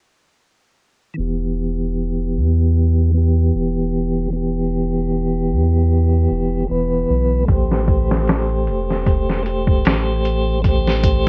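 The recording sounds dry and worn, like a warbling old cassette tape, with a drifting pitch and a dulled, low-passed top end. This fragment of a longer trip hop piece sits at a slow 76 BPM in E minor, with a hypnotic, smoky mood and a lightly swung sixteenth-note feel. A piping, scooped tonewheel organ enters at 1.1 seconds and settles onto an E minor chord at 1.2 seconds. Its clean tone is touched by key click, a stopped rotary speaker, tremolo, gritty 12-bit sampler texture and tape echo, while a filter sweeps across it. A deep, round, soft sub bass with a fast attack and sustained notes holds the low end beneath it. At 7.5 seconds the harmony moves to A minor seventh and a sampler-style drum kit arrives up front, compressed, pitched down and muffled, with a thumpy kick, a medium-tuned snare and hi-hat.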